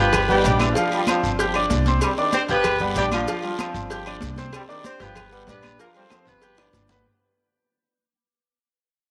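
A moderate plate reverb gives this fiery, driving salsa fragment at 190 BPM some space as it fades out across its full seven seconds, with a clear, up-front grand piano, its action noise audible, and a woody, thumpy pizzicato upright bass anchoring chords that move between G7, G7sus4 and Cmadd9. A dark, distant horn section with light vibrato and octave doubling carries the melody, while a smooth-topped, tight trombone section plays a second line. In the background sit high-tuned congas struck with hard hands, ringing agogo bells and timbales, vintage band-limited claves, a raspy guiro, grainy saturated maracas and very quiet low-tuned cowbell and bongos, with a drum fill arriving at 6.1 seconds.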